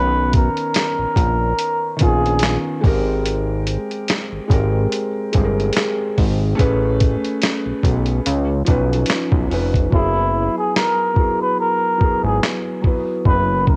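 A breathy, cup-muted trumpet opens this dreamy, nostalgic lo-fi hip hop excerpt over a soft, felt-muted upright piano with audible action noise and a fat, detuned sawtooth bass, then a gritty, pitched-down boom bap drum kit with a thumpy kick enters at 0.3 seconds; the veiled trumpet returns at 9.9 seconds with light vibrato and scooped notes as the hi-hats drop out, all in a small, cassette-worn room.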